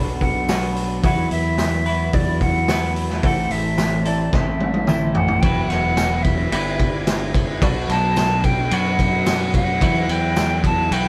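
Psychedelic rock at 109 BPM in E minor, dark and trippy, this excerpt from a longer piece sets a clean, compressed twelve-string electric guitar riff over a round, overdriven fuzz bass, with a hollow concert flute carrying a tongued melody with vibrato. A very quiet, reedy combo organ holds sustained chords beneath, while a saturated, gritty vintage drum kit with a rolled-off top and a tight kick sits up front, and a jingly tambourine stays in the background. A drum fill at 4.3 seconds leads into a new section at 5.4 seconds, where the chords move from Esus2 through G6 to Bm, and moderate studio reverb gives the feel of a band playing live in one room.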